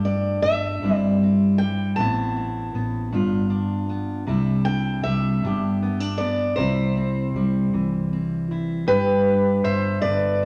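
In a slow, straight 6/8, this hopeful, peaceful acoustic folk piece, cut from a longer performance, pairs an up-front, full-bodied dreadnought guitar fingerpicking the accompaniment with a dark, picked concert steel-string guitar carrying the melody in a higher register, its finger squeaks audible. Underneath, a round, amped hollow-body short-scale electric bass sits low and quiet, and the whole is bathed in a large, wet studio reverb. At 8.9 seconds a clean, compressed pedal steel enters with a warm second line of fingerpicked slides and volume swells.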